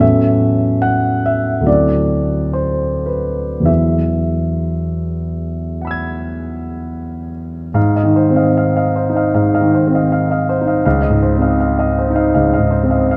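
A clear, up-front concert grand piano with a deep, natural bass plays alone through this hazy, serene impressionist classical fragment cut from a longer piece, drifting in free rubato between 49 and 84 BPM in 4/4 over rich chords like A69, D9 and Eadd9 in E major before shifting to Ab major at 7.8 s for Ab6 and Dbmaj9, all set in a dark production with moderate concert hall reverb.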